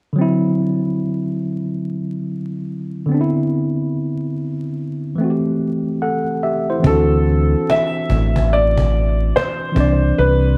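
Vinyl crackle and light studio reverb frame this hazy, melancholic lo-fi hip hop fragment, cut from a longer piece, at 72 BPM in 4/4 with a swung sixteenth feel. A worn, slightly out-of-tune tine electric piano, lightly overdriven through its built-in speakers and low-pass filtered, carries the chords alone at first, moving through D9, Cmaj9 and Am7. At 6.8 seconds a round, punchy deep dub fingered bass and a distant, woody cajon played with hard hands arrive, and at 6.9 seconds a soft, felt-muted upright piano takes the melody, its boxy, intimate tone filtered and echoed by analog delay, with audible action noise.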